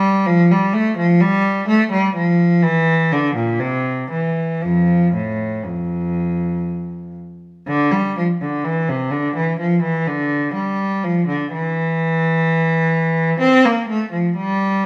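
A solo bowed cello with a nasal, reedy gut-string tone and light vibrato plays a flowing, serene baroque-style suite movement in F major and 3/4, moving with rubato at around 57-65 BPM in period style tuned to A4 = 438 Hz, its opening phrase returning at 7.7 s while a moderate stone-room reverb places the player further back in the space through this 14.8-second excerpt.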